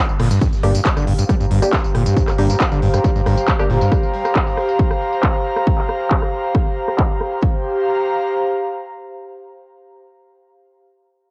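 An overdriven drum kit of handclaps, smooth hi-hats, ride cymbal, rim clicks and tambourine opens this intense peak-time techno cut, pumping against the kick and running through a filter sweep, before an overdriven electronic kick arrives up front to drive it. A deep, thick saturated sub bass and a squelchy, gritty acid riff with tape echo hold the low end, while a very quiet muted dub chord stab plucks beneath an airy, breathy pad with chorus. The bass parts drop out by 3.9 s, and the pad lingers alone from 7.5 s, all soaked in a wet spring reverb and the character of a home cassette recording.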